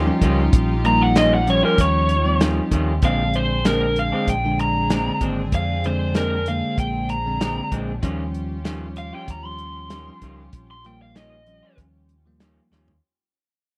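Soul blues at 96 BPM in Eb mixolydian, swaggering and rollicking, where an overdriven, cranked lead guitar carries the melody up front from 0.9 seconds over a dry, tight-kicked drum kit, a round, punchy hollow-body fingered bass, bell-like tine electric piano, lo-fi, slightly broken-up guitar stabs and a soft, floating sul tasto string section holding sustained chords, moving from Eb9 to Bb9 and back in a close 1970s-style room as the fade-out runs from 1.0 seconds to the end, with a drum fill at 12.7 seconds.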